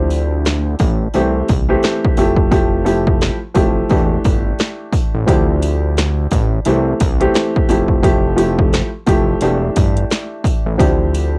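Boom-bap hip-hop at 87 BPM in D minor, this gritty, reflective cut from a longer piece swings its 16ths over a dark, woody upright piano whose audible action noise and cassette-tape grit keep it intimate, cycling through Dm11, C6, Fmaj9 and A7sus4/E. A fat, detuned sawtooth analog bass with a filter sweep sits up front beside it, while 80s electronic pad drums enter at 0.5 seconds with a punchy kick, gated snare and metallic hats, re-recorded in a small room. Faint, jingly sleigh bells ring through the whole passage, and the dry home-cassette sound gives it a lo-fi, close-up feel.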